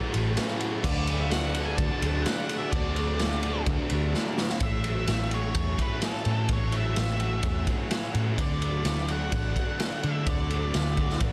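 Shoegaze and dream pop rock in a straight 4/4, this short cut from a longer piece feels blissful and wistful. A raw garage drum kit sits up front with a punchy kick, a medium-tuned snare, and dark crash and ride cymbals, its gritty, saturated sound pumping in a small room with a rolled-off top. Beside it, a vintage muted picked electric bass lays down a round, foam-muted line. In the background, three overdriven guitars play riffs: a biting one trailed by reverse reverb, a semi-hollow one with a subtle chorus, and a bright, double-tracked stack guitar with phaser that drops out at 4.6 seconds after a drum fill. From 0.8 seconds an octave-fuzz lead guitar carries the melody through distortion and tape echo. A very quiet, mellow organ-like ensemble pad with a soft attack holds sustained chords beneath the dense, heavily limited master.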